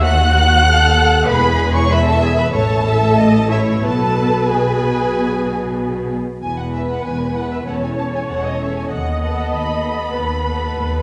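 A cheerful, graceful classical-period movement for string orchestra opens at once with all five sections bowing together in E major, moving at a quick 96 BPM in 4/4 yet shaped with a flexible rubato. The violins carry the melody high in their register, their sound lush and expressive with a singing vibrato, while a second violin section traces a focused inner line beneath them. Violas fill out the accompaniment with a smooth, even tone. Underneath, the cellos lend a dark, woody depth to the bass, joined by double basses whose focused low end has a smooth top. The whole ensemble sits in a reverberant recital-hall space with a generous 1.7-second decay, and this short cut from a longer piece plays through to 11.0 seconds.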